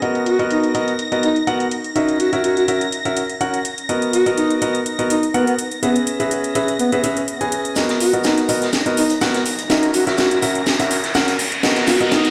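A swung 124 BPM groove in 4/4 drives this feel-good, joyful piano house excerpt in B major, with a house drum kit of cracking snare and metallic, filtered hi-hats running from the start. An up-front, clear grand piano plays a riff through tape echo, its action noise audible, while a string machine holds shimmering, sawtooth violin chords high above with a soft attack and ensemble chorus. A mellow alto saxophone enters at 0.3 seconds with a smooth-topped, classical-style solo melody carrying light vibrato, cycling over Bmaj7, F#7 and E6 chords. At 7.8 seconds a build-up begins: a filter sweep moves across the piano, a drum fill arrives, and a gritty, saturated garage kit with hi-hat, shaker and snare joins in the background. A riser sits behind from 9.0 seconds, and the whole mix carries plate reverb and the echo of a bare stone room heard through a big sound system.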